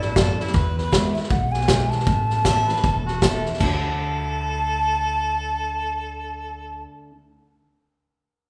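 A breathy alto ocarina carries the melody in this short, easygoing slice of honky-tonk and classic country, its clay tone touched with vibrato and a crisp, expressive attack. Beneath it a mellow harmonica plays a soft, distant second line with light vibrato and a jazz flavor, while a bright, full-bodied steel-string acoustic guitar picks out the accompaniment on fresh strings. A woody pizzicato upright bass on gut strings adds a thumpy low end. An up-front vintage drum kit drives the swung 157 BPM groove in 4/4 with a punchy kick, dark cymbals and a gritty, saturated edge, then drops out at 3.7 seconds as the music moves into its second section. The chords move through D, E and A before returning to D, and a wet recital hall reverb wraps the whole ensemble, lending this nostalgic fragment a roomy, church-like glow.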